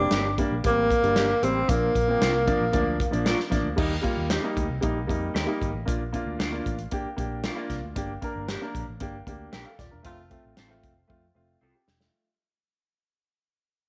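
An echo-chamber sheen surrounds this joyful, danceable 1960s-style soul excerpt at 115 BPM in Bb major, where a breathy, subtone alto saxophone with tape echo sings the melody only until 3.5 seconds over a woody upright piano, a dark, foam-muted fingered electric bass, twangy slightly broken-up guitar stabs with lush chorus, and a tight, up-front country drum kit, before a brief saxophone section line slips in at 10.0 seconds amid a band accent and a closing drum fill as the track fades out.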